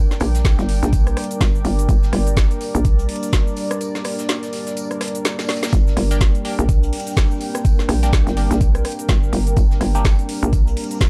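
Bass house with a bouncy, swaggering feel, where an overdriven, knocking electronic kick and a hollow, punchy FM bass with tube saturation sit up front against a deep, moody ambient pad and a warbling, lo-fi tape-like pad that pump as they sustain the G minor chord with chorus and reverb. An overdriven garage drum kit brings a woody snare, metallic hats, cabasa and rim clicks, while a vintage brush kit with snare, hi-hat and tambourine adds a small-room, rolled-off layer in the background; a break runs from 3.8 to 5.7 seconds, closing on a drum fill. From 6.1 seconds a nasal, band-passed chord stab with phaser and dub echo flickers brightly behind the mix, all in a dark, warm production cut from a longer piece.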